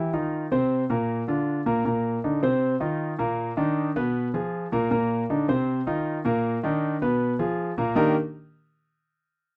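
A solo concert grand piano opens this sunny, danceable jazz fragment, cut from a longer piece, with an intimate, vintage tone, deep bass and audible action noise sitting up front in the mix. It plays in a straight feel, moving between Eb5, Bbsus24 and Abm69 chords before settling on Ebmaj7 at 8.0 seconds, and the piano stops at 8.1 seconds. The rough home demo mix carries a moderate studio reverb.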